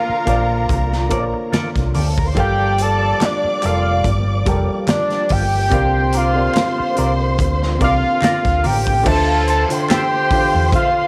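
Lush 1970s-style soul in D minor at 72 BPM with a gently swung 16th feel, this bittersweet, smooth passage from a longer piece is led by a fat, nasal analog synth that solos up front until 9.1 seconds over Bbmaj7, Gm9 and C9sus4 before settling on Dm9. Beneath it, a dark, lush bowed string section sings a second line with vibrato, a natural baby grand piano supplies accompaniment, and a very quiet, lightly overdriven tonewheel organ with slow rotary and key click holds sustained chords until 9.0 seconds. A round, punchy hollow-body bass and a studio drum kit with a punchy kick and pumping room anchor the groove, while a bright, twangy clean guitar riff with wah and chorus, distant low-tuned congas and crisp group handclaps from 3.2 seconds sit in the background, all in light small-room reverb.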